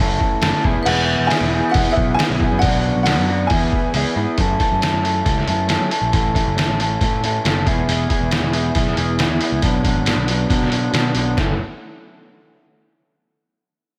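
A big arena sound in lush hall reverb frames this cool, moody indie rock excerpt at 137 BPM in F# minor, where a muffled, pitched-down trip hop sampler-style drum kit and a twangy, slightly broken-up electric guitar with slapback echo sit up front over a growly picked electric bass, while a dark, woody upright piano with slapback echo and digital delay carries the melody beside a bright, ringing vibraphone in the background until 4.1 seconds, the kick and snare drop out briefly at 3.9 seconds, and a very quiet brassy analog pad returns at 7.9 seconds.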